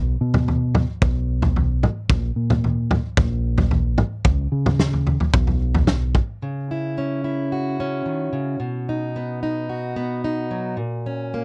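A dark, round fingered electric bass opens this hopeful, nostalgic indie folk excerpt. A loose drum kit with a fat snare, punchy kick and gritty, saturated, rolled-off character joins almost at once, and both sit up front in a dry, close 1970s-style studio sound. At 6.4 seconds they give way to a warm, fingerpicked plugged-in steel-string acoustic guitar that carries the piece alone over C#m, B and F#/A# chords.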